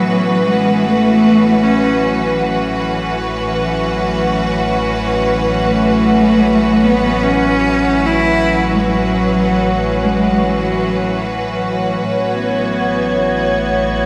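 Unmeasured and floating in free time, this ambient passage, cut from a longer piece, feels luminous and warm. A bowed solo cello carries the melody with focused vibrato, its lines trailed by dub echo until it stops at 11.2 seconds. Alongside it, an up-front studio string section holds sustained chords with light vibrato and a biting, earthy edge, bathed in shimmer reverb. Meanwhile a round, dark analog bass fades in on a single deep note, its evolving sawtooth-and-sine tone colored by ring modulation. From 1.8 seconds a resonant, chorused drone with moving overtones sits in the background, and at 12.2 seconds an airy, breathy, wind-like noise texture drifts in high above. The mix is echo-heavy, set in a wet echo chamber with a long reverb tail.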